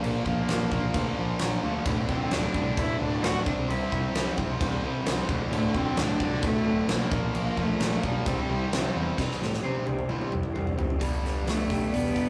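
A rough rehearsal-room recording with tube saturation and moderate reverb carries this bittersweet, anthemic quiet-loud alternative rock excerpt at 131 BPM, where a rich, reedy bowed cello sings the melody over a punchy, fat-snared arena drum kit, a bright overdriven guitar riff joined by a very quiet, dark fuzz guitar riff, a growly fuzz bass in the background and a faint, shimmering string machine pad, until at 9.2 seconds the fuzz guitar and strings stop, a drum fill arrives and a lo-fi, slightly broken-up guitar adds phaser-tinged arpeggios, leading into a short cello solo at 11.0 seconds over a Gadd9 chord.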